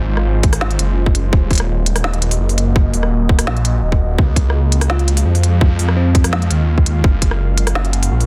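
A deep, dark ambient pad and a phased, detuned saw bass open this spacious, cinematic slice of half-time drum and bass at 168 BPM. The pad's moody, full-bodied sustained chords carry chorus, built-in reverb and sidechain pumping. Beneath them the bass sits up front, thick and swirling through its phaser, with a saturated edge. An electronic drum kit with a woody snare, smooth hats and rim clicks, its snare softly clipped, is joined by a tight, overdriven kick that punches up front, both in a small room. At 4.9 seconds a mellow, bell-like FM electric piano adds a brief sparkling line in the background, touched with chorus and delay, until 6.5 seconds. The harmony moves through Fm, Ebm, Db and Gb, and the dense, heavily limited master keeps the overall sound dry and close.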